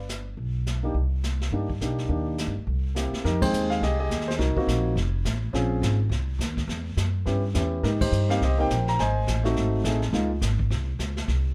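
A dark, lightly reverberant production frames this cool, late-night jazz piano trio excerpt, swinging briskly at 209 BPM in 4/4 and moving from C minor to F minor at 3.2 s through rich harmony such as Fm9, Abmaj9 and Ab7b9. An up-front grand piano with a natural, warm tone carries the melody over a woody pizzicato upright bass, while a distant, roomy brush kit adds dark cymbals, a medium-tuned snare and a boomy kick. The band lands together on accents along the way, and the piano drops out at 10.3 s, leaving bass and brushes to close.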